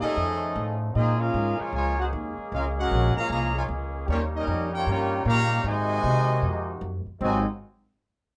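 A brassy, energetic big band swing excerpt opens with the full ensemble at once: a bright trumpet section carries the melody while a trombone section plays a second line beneath it, with a soft attack. Further back, a muted trombone section in straight mutes holds sustained chords with a nasal edge. An upright bass sits up front, plucked on gut strings with a woody, thumpy tone. The tempo is 153 BPM in 4/4 with a swung eighth-note feel, in Ab major and tuned slightly low to A4 = 436 Hz. The harmony moves from F7alt through Bbm7 and Eb9 to Ab13. A new section begins on Ab9 at about 7.2 seconds, and all four parts fall silent shortly after, by about 7.5 seconds. The moderate club reverb lends the mix a sense of room.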